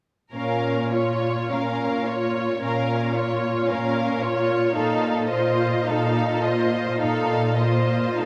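Melancholic and solemn, this slow romantic movement for string orchestra in Bb minor unfolds with rubato at 50-57 BPM in 4/4, as a close, lush violin section carries the melody over a distant second violin line, expressive violas sliding with portamento and an up-front cello section anchoring a smooth Bb bass, every section bowed with vibrato and bathed in a wet concert hall reverb within a dark, warm production while the harmony moves from Bbm to F7/Bb at 4.8 s.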